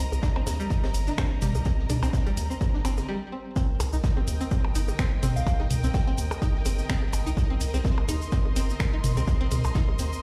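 A punchy, up-front electronic kick and a deep, round analog bass anchor this sparse, hypnotic minimal techno cut in C minor at 126 BPM, heard as if on a big sound system in a bare room with large studio reverb, its 16ths swung at 55%. A twangy, string-like resonator pluck riff with chorus, delay and sidechain pumping rides over a lush bowed string section, while tape-echoed electronic blips and toms, house-kit snaps and hats, a grainy tube shaker and a muffled vintage kit's hi-hat and snare fill out the groove, the shaker and vintage kit sitting in the background. After a break from 3.1 to 3.6 seconds the drop arrives, and a soft, mellow FM bell with chorus and tape echo surfaces briefly at 5.4 seconds in this fragment cut from a longer piece.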